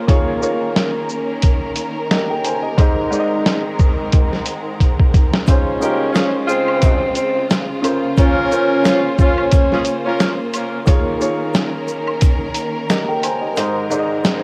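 A sampler-style drum kit sits up front in this reflective, gritty boom-bap hip-hop excerpt, its pitched-down, compressed sound built on a thumpy kick, a medium-tuned snare, hi-hat and shaker, swinging at 89 BPM in 4/4. A woody upright piano and a lush, bowed string section carry the harmony throughout, moving from Eb7sus4 to Ab, then through Dbmaj7 and Bbmadd9/Db before returning to Eb7sus4 and Ab, both filtered and colored by cassette tape. After a drum fill at 4.8 seconds, a breathy tenor saxophone enters at 5.5 seconds with a mellow, whispered jazz-style solo, its subtone, vibrato and scooped notes set distant in tape echo. A horn section with octave doubling adds pop-style stabs from 5.8 seconds, while a tube shaker, woodblock and group handclap stay close and dry in the background. The whole piece carries the small-room feel of a home cassette recording, and the kick drops out for the final moments from 13.6 seconds.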